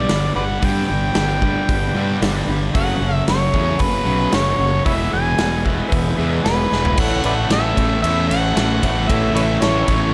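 A gritty, amplified harmonica sits out front with a touch of analog delay, backed by light reverb and a small-room ambience across this excerpt of confident, driving classic rock in A major at 114 BPM, in straight 4/4. The overdriven harmonica carries the melody with punchy tongue slaps, matched up front by a fuzzy fingered electric bass and a big acoustic rock kit with a punchy kick, medium-tuned snare, bright cymbals, hi-hat, ride and toms. Behind them, a warm overdriven electric guitar and a tight, distorted guitar play riffs, while a bright tonewheel organ with rotary speaker, key click and chorus vibrato holds very quiet sustained chords. A brilliant baby grand piano enters at 2.7 seconds with very quiet accompaniment as the chords move from G through F#madd9 to E. A drum fill at 6.7 seconds leads into a new section on A at 7.0 seconds, where a double-tracked, crunchy overdriven guitar joins very quietly with its own riff.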